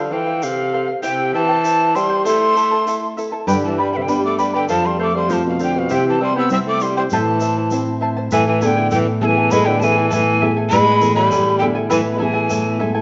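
In a straight two-beat pulse, this wistful, melancholic Andean folk piece sets a breathy cane quena melody, with vibrato and a chiffy attack, over a clear, smooth-topped tenor saxophone second line, shimmering fingerpicked charango and a grainy, distant egg shaker, while a full-bodied fingerpicked nylon-string guitar joins up front at 3.5 s, all within a dark recital-hall reverb.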